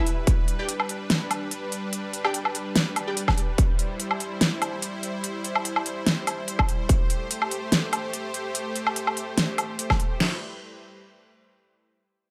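An overdriven dubstep drum kit stands out most, its punchy kick, deep snare and crash cymbal hitting up front in short bursts at 0.3, 3.3 and 6.6 seconds, with a final hit at 9.9 seconds. This menacing, heavy wobble dubstep excerpt moves at 145 BPM in 4/4 with a half-time feel and a light swing on the 16ths, set in E minor. A big-room dance drum kit runs throughout, also up front, with a huge snare, crisp hi-hats and a woodblock carrying a tape-warm, small-room character. Beneath them a lush, bright supersaw pad of detuned sawtooth voices and a sub octave holds slow-attack chords, pumping with sidechain, moving from G through C/G and Am7 before settling on Em at 10.2 seconds, where a short new section begins. Early on, a bold, full-bodied orchestra-hit-like synth stab fires fast, filter-plucked hits with a noise layer, tape echo and its own reverb, stopping at 3.1 seconds. The whole mix sits in light digital ambience.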